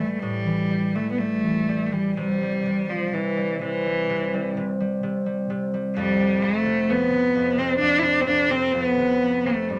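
A light reverb surrounds two close, up-front instruments in this short excerpt from a longer Celtic slow air, steeped in a haunting, longing mood. A single bowed cello carries the melody from start to finish, its tone clear and focused and coloured by vibrato. Beneath it, a concert harp provides fingerpicked accompaniment in a lower register, its bright, ringing acoustic strings sitting a little behind the cello in level. The rubato feel gives the phrases a free, unhurried flow. The harmony shifts at 2.2 and 6.0 seconds as the two parts continue together to the close at 9.8 seconds.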